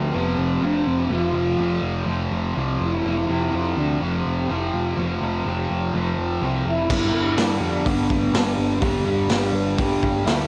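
A blissful, dreamy shoegaze and dream pop piece at 124 BPM opens on a fuzzy, double-tracked guitar riff over an F5 chord, with a mellow, horn-like synth lead carrying the melody through chorus, vibrato and tape echo while a growling, overdriven bass holds the low end. At 6.9 seconds the harmony moves to G and a raw garage drum kit enters up front, with a boomy kick, dark cymbals and a gritty, saturated small-room sound. The home cassette recording carries light reverb.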